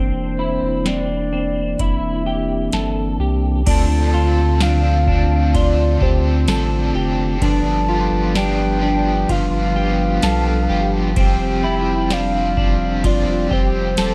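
A dark, dry production frames this ethereal, melancholic dream pop excerpt, where a soft octave-layered synth lead with vibrato carries the melody through chorus, phaser and digital delay over mellow, flute-like tonewheel organ chords with key click and clean, fingered semi-hollow guitar arpeggios with ensemble chorus and delay, all anchored by a round, up-front analog bass, until a booming analog drum machine with a deep kick and metallic hats enters at 0.9 seconds and a crunchy, bright overdriven guitar with tremolo joins at 3.7 seconds.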